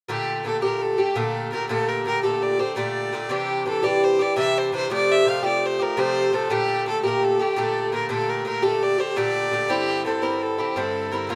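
In a rough home-demo mix with light reverb and small-room ambience, this short, dark and lively Celtic slip jig in 9/8 drives along at 112 BPM in G dorian, with an earthy bowed fiddle carrying the melody up front with a clear tone and light vibrato over a metallic, picked Irish bouzouki whose double strings ring out the accompaniment through chords such as Gmadd9, Cadd9 and Fadd9.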